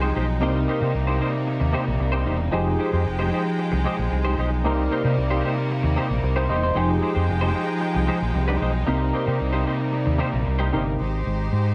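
Disco at 114 BPM in F minor, this danceable, glamorous excerpt sets a dark, round overdriven fingered electric bass up front beneath a barky, phased tine electric piano, a semi-hollow electric guitar with ensemble chorus, and a clear, biting studio string section holding sustained chords in light reverb, as the harmony moves between Cm7 and Fm9 before landing on Abmaj7 at 11.0 seconds.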